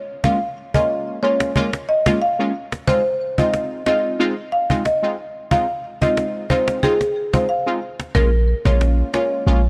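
A close, dry marimba with medium mallets carries the melody in this bouncy, hypnotic dancehall excerpt, its full tone colored by digital delay, with light reverb on the mix. Punchy, detuned sawtooth brass stabs with chorus and phaser supply the accompaniment over minor seventh chords, while a woody, acoustic cajon with faint snares sits up front. A deep, boomy 808-style bass with a noise layer arrives only at 8.1 s, just before the cut.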